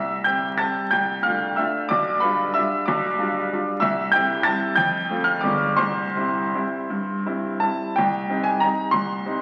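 A clear, woody upright piano, slightly detuned and up front with a long sustain, plays alone through this short cut from a longer classical waltz in C major, moving in 3/4 at a rubato pace between 157 and 197 BPM. The mood is playful and graceful, with harmonies passing through C, Dm7/C, G7/B, F and G7b9 before a shift to C minor at 8.0 seconds. A reverberant recital hall surrounds the instrument, and the sound carries the crackle of a very old 78 rpm record.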